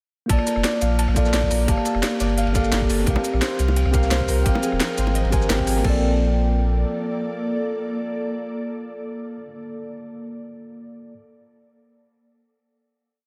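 A short, uplifting liquid drum and bass piece opens at once with its drop, as a mellow tine electric piano plays held chords with syncopated pushes, a bright, ringing concert harp ripples through a 16-step arpeggiated sequence in the background, and both carry delay. Underneath, a round sine sub bass sits up front with a dotted-rhythm line, while an electronic kick, a tape-warm kit of cracking snare, crisp hats, rim, shaker and crash, and a gritty, dark looped breakbeat with edits drive a rolling two-step groove. Very quiet, low-tuned bongos slip in at 3.2 seconds, and an ethereal, detuned pad with ensemble chorus and sidechain pumping rises slowly from 4.3 seconds. The drums drop away near 5.9 seconds, leaving the sub bass, pad, harp and electric piano on a final chord. The bass fades out shortly after, and the others ring on until the piano holds alone until 11.1 seconds. The mix is dreamy and lush, soaked in hall reverb over a small room ambience.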